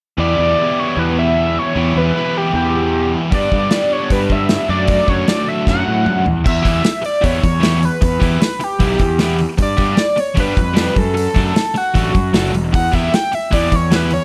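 Restless and cool, this indie rock excerpt drives along at 153 BPM in a straight 4/4, sitting in E dorian with a dark production. A screaming, gritty synth lead built from sawtooth and square waves carries the melody from the start, its bright, guitar-like tone thickened with distortion, chorus, tape echo and vibrato, and it holds sustained notes high up front. Beneath it, a sludgy, double-tracked electric guitar grinds out an overdriven riff, while a fuzz-soaked picked bass, direct and amped, sits prominently alongside. The loose acoustic drum kit enters at 3.3 seconds with a tight kick, a medium-tuned snare, dark cymbals and toms, its small room pumping audibly, and a drum fill from 5.7 to 6.5 seconds launches the second section. The harmony cycles through Em, G and D/F# before settling back on Em, all wrapped in a light small-room reverb.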